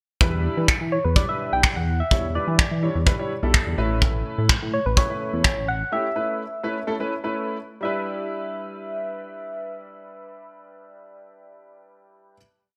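A warm concert grand piano playing syncopated chord stabs in drop-2 voicing, a glossy chorused synth bass with a syncopated figure, and a tight four-on-the-floor kit of kick and finger snaps open this bittersweet, energetic dance-pop piece at 126 BPM in E dorian, joined at 0.9 s by a round, FM-toned struck synth lead carrying call-phrase motifs through chorus, phaser and delay, until the bass and drums drop away by 5.8 s and the piano and lead sustain a closing Em7 chord from 7.8 s in a bright 1980s-style digital production with light small-room reverb.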